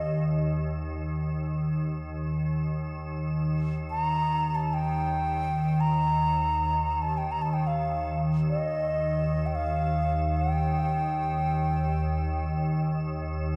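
Meditative world music in free time, this spacious, peaceful excerpt from a longer piece sets an airy bamboo xiao melody, close-miked with gentle vibrato and a diffuse ambient delay, over a crystalline glass-pad drone that sits up front with chorus and its own built-in reverb. A very quiet soft-mallet vibraphone rings mellow and metallic only during the first 0.5 seconds. The recording is bathed in a long church reverb and has a dark overall production.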